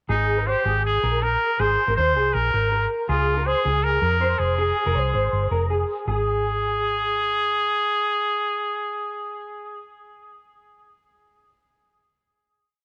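A nostalgic, bright jangly indie pop miniature in which a clear, lightly vibrato trumpet carries an up-front, motif-based melody over a ringing, slightly broken-up guitar figure with ensemble chorus that drops out at 7.2 seconds, while a foam-muted, round fingered bass sings a melodic line with slides beneath a light studio reverb, moving from Abadd9 through Dbmaj7 to Fm before a held final note from 6.1 seconds.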